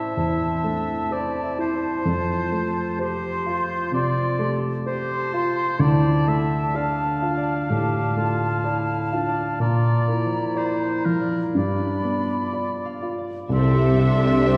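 Cinematic, emotional film score for orchestra, moving and hopeful, drifting rubato at 63 BPM, where a dark, up-front baby grand piano and bright, ringing harp arpeggios support second lines from clear oboe, airy silver flute and smooth clarinet through Am, F, Dm, Bb and G7. Then lush bowed strings enter on a C chord at 13.5 seconds: a focused violin melody on E5, with a second violin line and violas in the background over cellos and double basses, joined by a barely audible mellow French horn section. It is all set back in a reverberant concert hall in this short cut from a longer piece.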